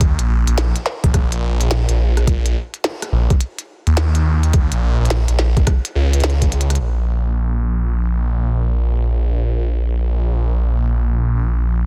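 Glitch hop at 106 BPM with a swung sixteenth feel in Bb minor pentatonic, this gritty, swaggering excerpt pairs a thick, swirling phased saw bass with an up-front, pitched-down overdriven kick and a clicky, tiny-snared glitchy kit re-recorded in a small room. The kick drops out at a fill at 6.5 seconds and the kit follows at 6.9 seconds, leaving the saturated bass alone until 11.9 seconds in a dry, dense, heavily limited mix.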